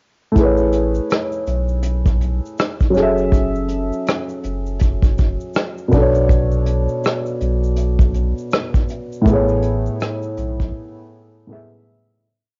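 Lo-fi hip hop at 81 BPM in A major, cosy and dreamy, built on a dark, woody upright piano holding spread chords from Amaj9 through F#m7 and Bm7 back to Amaj9, a deep, saturated sub bass playing a sparse line, a slumped, off-grid vintage brush drum kit up front with a punchy kick, hi-hat and rim click, and a grainy egg shaker playing sixteenths in the background, heard as a home cassette recording with light reverb and a dulled top end, fading from 9.3 seconds until the piano carries a brief solo break from 10.7 to 12.2 seconds.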